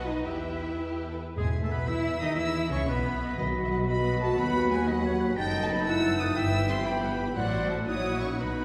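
A restless, urgent orchestral passage in six-eight opens on bowed strings: a lush violin section carries the expressive, vibrato-laden melody over a quieter second violin line, a rich viola section, dark cellos and smooth, even double basses. At 1.4 seconds a clear oboe, an airy flute and a distant clarinet add supporting lines, while a tight French horn section holds sustained chords and round, soft-mallet timpani enter, returning for a fill at 8.4 seconds. The harmony turns to minor at 5.4 seconds, and a wet reverb places the orchestra further back in the room.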